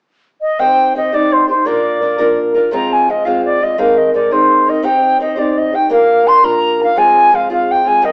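A reedy baroque flute opens this wild, driving Celtic jig in 6/8 at 0.4 s, singing the melody with a pure, bright tone, vibrato and a soft attack. A fingerpicked, ladder-braced acoustic guitar joins at 0.6 s with a dark, woody, boxy accompaniment on old strings, moving through Cm, Bb, Fm and Abadd9, with both instruments placed up front. The pair plays live in one room, with wet reverb and a small-speaker sound, in a passage cut from a longer piece.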